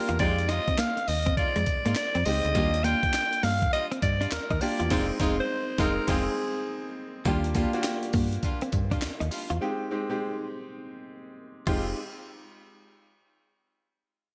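A growling, raspy alto saxophone leads this punchy, slick new jack swing cut over a brilliant grand piano, snappy FM slap-style bass, a gritty sampler-style breakbeat kit with a thumpy kick, high-tuned snare, handclaps and tambourine, a clean chorused electric guitar riff and delayed horn stabs in the background, with the sax dropping out at 6.9 seconds, a band accent while the kick is muted from 4.9 to 7.3 seconds, and a break at 9.6 seconds, all bathed in a moderate plate reverb within a bright 1980s-style digital production.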